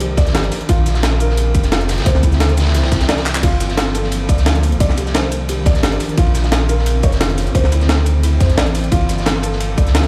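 An ethereal, detuned pad with ensemble chorus and its own reverb holds sustained chords while a felt-muted upright piano, soft and intimate with audible action noise, plays delayed arpeggios over a deep, up-front sine-and-triangle sub bass with octave, opening this melancholic, rolling cut of liquid drum and bass in G minor at 175 BPM. A compressed, gritty sampler-style breakbeat kit with a high-tuned snare, claps, shaker, hats, ride and crash also plays from the start, along with a quieter, saturated acoustic breakbeat layer with a dark, high-passed ride and a high-passed snare. A tight, tape-toned electronic kick joins at 0.2 s, and a drum fill lands at 3.3 s. The chords move through Cm9, Bbm9, Dsus2 and Gm9, and the mix sounds as if played on a big sound system in a bare room, with a large studio reverb.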